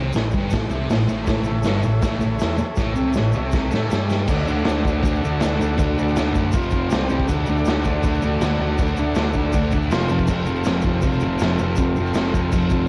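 Rowdy and swaggering, this garage rock excerpt charges along at 160 BPM in a straight 4/4, driven by a thick, double-tracked fuzz guitar riff up front and a round, overdriven fingered electric bass beneath it. A raw, gritty drum kit with a punchy kick, medium-tuned snare, hi-hat and crash sits close on cassette tape with a rolled-off top, and a drum fill from 2.8 to 4.3 seconds leads into the second section, while a grainy tube shaker rattles in the background. From 1.2 seconds, a buzzy vintage combo organ holds overdriven chords with heavy vibrato and adds short fills, all under a light reverb that gives the whole thing a home-cassette rawness.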